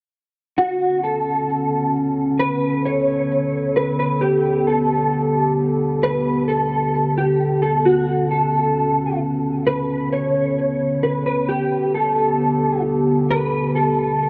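A clean, mellow electric guitar opens at 0.6 s with a dark, compressed melody sitting up front between F#4 and C#5, softened by ensemble chorus, a low-pass filter and delay. A moment later, at 0.9 s, a deep, moody analog pad enters with sustained chords built from detuned square, sawtooth and triangle waves, a sub octave and ring modulation, its slow attack and long release giving it an evolving, shadowy presence. This hazy, melancholic hip hop fragment is cut from a longer piece and moves at 132 BPM in 4/4 with a half-time feel, in B minor with tuning at A4 = 436 Hz. The harmony rocks between Bm9 and A9sus4, changing at 4.2, 7.8 and 11.5 seconds. A huge ambient reverb with a 7.7-second decay bathes the sound in a misty, drifting space until both parts stop at 14.3 s.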